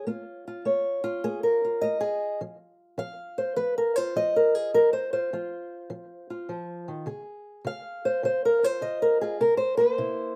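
Mournful and smoky, this brief fragment of acoustic country blues in a swung 4/4 features a lone fingerpicked, ladder-braced acoustic guitar, dark, woody and boxy with the dull ring of old strings, sitting up front with a slapback echo in a dry, open-air sound that drifts through Bbm7, F5, Db and C7 over its 10.4 seconds.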